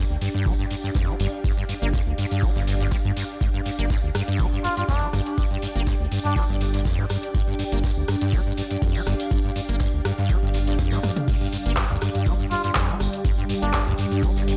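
Driving at 122 BPM in 4/4 with a light 16th-note swing, this trippy acid house excerpt rides an overdriven electronic kick, a tape-warm electro drum machine with metallic hats, claps, shaker and toms, and a brushed jazz kit tucked in the background, while a squelchy, resonant saw acid riff with overdrive, chorus, cassette tape and dub echo coils over a round, deep analog bass and an ethereal, warbling pad that pump under the sidechain, a veiled cup-muted trumpet with digital delay slips in at 4.6 seconds, a drum fill lands at 11.0 seconds, and a moody, detuned dark pad joins at 11.3 seconds in a dark, lightly reverberant production.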